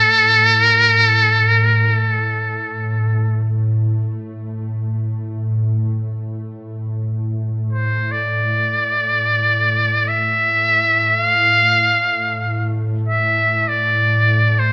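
In free time, this longing, solemn Caucasian folk lament in A minor sets a buzzy, thin muted trumpet singing a vibrato-laden classical-style solo melody between A4 and F5 up front over an ethereal, detuned pad holding a drone on A2 with ensemble chorus and built-in reverb, both sounding throughout this excerpt in a wet recital-hall ambience.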